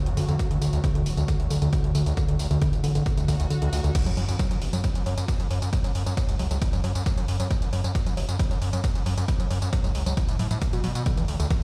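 A punchy, layered electronic kick sits up front of this driving, industrial and relentless peak-time techno cut at 135 BPM in F# minor, alongside a gritty, nasal sawtooth bass with sidechain pumping, a dark, woody wave-folded pluck riff carrying chorus, tube saturation and delay, and an overdriven analog drum machine of crash, hi-hat, ride and tambourine. A tense, swarming detuned drone hangs in the background until 4.0 seconds, when the kick, after dropping out at 3.5 seconds, returns as an electronic swell gives way to an impact at the drop, all set in a large studio reverb.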